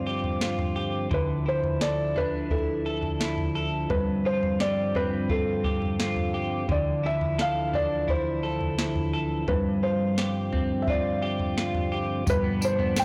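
Dream pop with a hazy, melancholic mood, where a soft, felt-muted upright piano carries the melody through digital delay while a bright, twangy clean electric guitar plays up-front arpeggios drenched in lush chorus and delay, a dark, round tonewheel organ holds lightly overdriven chords through a slow rotary speaker, and a vintage analog rhythm box with a deep kick, tonal snare, tambourine and toms enters at 0.2 s, all set in a wet concert hall reverb on a blown-out, overdriven recording that drifts between G7sus4 and Dmadd9 before landing on G7 at 12.3 s as this fragment of a longer piece cuts off.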